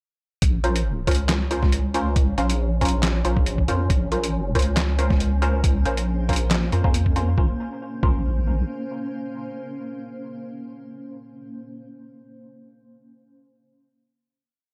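This deep dubstep piece in Bb minor starts at 0.4 s, when a deep, soft wobble bass, a muffled, thumpy kick and a gritty, overdriven sampler-style kit of snare, closed hi-hat and handclaps arrive together in a half-time beat at 138 BPM with a light swing. The bass sits up front, a detuned sine-and-triangle tone thickened by chorus, its modulated phrases shifting in wobble speed against the compressed, pitched-down drums. Just after, a filtered dub chord stab places muted, off-beat chords, one shape moved in parallel, colored by phaser, lush chorus and dub echo. An airy, breathy wind-like noise texture holds a high note in the background, and from 5.0 s a cloudy granular pad with a moving notch and slow attack blurs in with sustained chords. At 7.4 s the drop gives way to a final chord in which the pad and the stabs linger, leaving a cavernous, heavy mood in a dark, dry mix.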